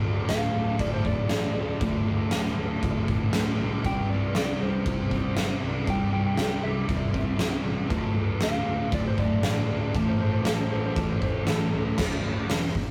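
A double-tracked fuzz guitar opens this rowdy, raw garage rock excerpt at 118 BPM in a straight 4/4, picking a dark, distorted riff, with a round, punchy fuzz bass underneath in the background. At 0.3 seconds an oversized, low-tuned acoustic drum kit crashes in up front, its boomy kick, fat snare, dark cymbals and hi-hat sounding gritty and saturated in a big, pumping room. At the same moment an electric slide guitar takes the melody between A4 and A5, its tone slightly broken-up and compressed. The harmony moves from D5 to C, back to D5, then to A5 before resolving on D5 at 12.0 seconds, where the slide guitar stops. The whole take has the rough feel of a rehearsal-room recording, with warm saturation and a moderate small-room reverb.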